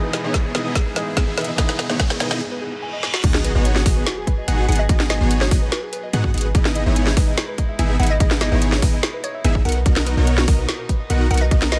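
A dry, close-sounding mix opens this bittersweet, lush future bass passage, cut from a longer piece and moving in a half-time feel. A felt-muted upright piano, soft and intimate with audible action noise, plays accompaniment in the background for the first 3.0 seconds. Beneath it sit very quiet, distant chamber strings with a reedy gut-string tone, alongside a round, gentle pluck whose arpeggios pump with the kick and run through chorus and delay. A riser and reverse cymbal build toward a brief break, and at 3.2 seconds the drop lands with an impact and a deep, boomy 808-style bass up front. A huge, thick supersaw riff with vintage 12-bit sampler grit drives the drop over a hard-clipped electronic kick and a trap kit with a woody snare and metallic hats. From 4.7 seconds a glassy, crystalline wavetable pluck carries the melody in the background as the chords move from G#m7 through Emaj7/G# to Bmaj7.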